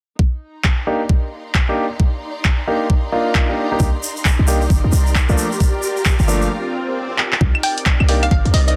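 A knocking, tape-warm electronic kick and a bowed studio string section fading in at 0.2 s open this moody, soulful slice of two-step UK garage, swung at 133 BPM in C minor, the strings' vibrato pumping under sidechain compression. A dry, punchy analog drum machine of claves, handclaps and hi-hat soon joins, while warm concert grand piano stabs, darkened by a low-pass filter and trailed by dub echo, sit up front with audible action noise and long sustain over Cm9 moving to Gm7. At 3.8 s a tight, sine-based 808-style bass with a fast attack arrives alongside silky, vintage string-machine chords thickened by ensemble chorus and a grainy egg shaker recorded in a live room. After a short break filled by an electronic swell and a drum fill, the harmony returns to Cm9 and a hollow, bouncy square-wave pluck, detuned and wave-folded under lush chorus, enters at 7.6 s with a bright melody. The dense, heavily limited mix carries only light reverb.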